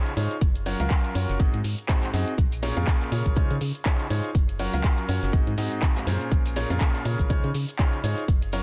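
A dense, heavily limited modern mix with little reverb carries this soulful, energetic piano house excerpt at 122 BPM with a swung 16th-note feel, as a clear, natural grand piano riff with delay and sidechain pumping cycles through Gbmaj7, Ab7, Bbm7 and Dbmaj9 over a hollow, dark, organ-like FM bass that also pumps, a layered, punchy electronic kick sitting up front, an analog drum machine re-recorded in a large room supplying cabasa, handclaps and hi-hat, and a dry, muffled, lo-fi soul kit of filtered hi-hat, shaker and snare tucked into the background.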